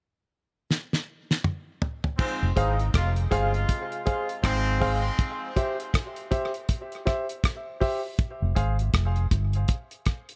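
The dark, round, foam-muted electric bass sits up front in this meditative, deep dub reggae excerpt, entering at 2.4 seconds with a low line over a swung 80 BPM groove in F harmonic minor. A damped 70s drum kit with a fat snare, tight kick, rim clicks and toms opens with a fill at 0.7 seconds, and a tight horn section with light vibrato plays a brief second line soaked in tape echo. Short-sustain grand piano stabs, high-passed and echoed with a filter sweep from 5.2 seconds, ride over a break as the harmony moves from Fm to C and back in an echo-heavy studio mix.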